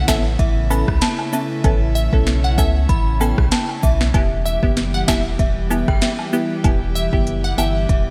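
The groove sits at 96 BPM in 4/4 with a light swing on the sixteenths, a bouncy, sultry dancehall excerpt in E dorian that moves from Aadd9 to Em at 4.1 seconds. An electronic afro-pop drum kit sits up front with a deep kick, sharp snare, smooth hats and rim clicks, all wrapped in gated reverb, while a cabasa and woodblock add close, dry acoustic texture in the background. A round sine sub bass anchors the low end, and a crisp, warbling wavetable chord stab and an airy, breathy pad with a slow attack and long release both pump against the beat through sidechain compression, the pad also carrying chorus. On top, a glassy, crystalline wavetable pluck carries the melody between E5 and F#5, treated with chorus and digital delay, and from 0.4 seconds a ringing, inharmonic FM synth chime adds a second line with ensemble chorus, phaser and delay. The whole excerpt has a bright 1980s-style digital sheen with light reverb.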